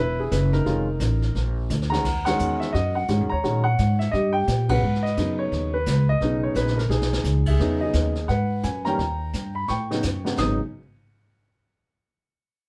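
Recorded live in one studio room with moderate reverb, this cool, smoky fragment of a swinging jazz piano trio puts a natural-sounding grand piano and a woody, pizzicato upright bass up front. The piano carries the melody over rootless and altered chords, the bass holds down the low end, and a brushed drum kit with dark cymbals, a high-tuned snare and a boomy kick joins at 0.3 s, adding short fills. The full band hits accents together at 2.2 and 4.7 seconds.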